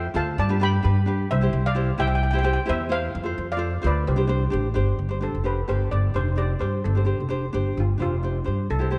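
A lightly swung 4/4 calypso groove at 130 BPM carries this festive, carefree excerpt, where a brilliant, shimmering double-seconds steel pan struck with hard rubber sticks leads the melody over a mellow, fingerpicked ukulele and a woody, up-front pizzicato upright bass with steel strings, moving through G, C, F and Csus2 before the pan takes a solo from 5.0 seconds over G7sus4, all set in a moderate scoring-stage reverb.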